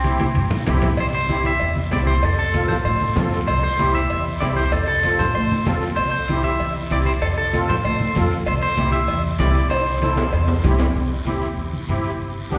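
Danceable and sunny, this cumbia excerpt puts a twangy, slightly broken-up electric guitar melody with spring reverb up front, over a reedy, shimmering musette accordion, a thumpy, woody pizzicato upright bass, low-tuned congas, a raspy guiro and ringing timbales and cowbell, with drum fills at the start and again near the close as the guitar drops out at 10.6 seconds, the band heard in the wet reverb of a concert hall.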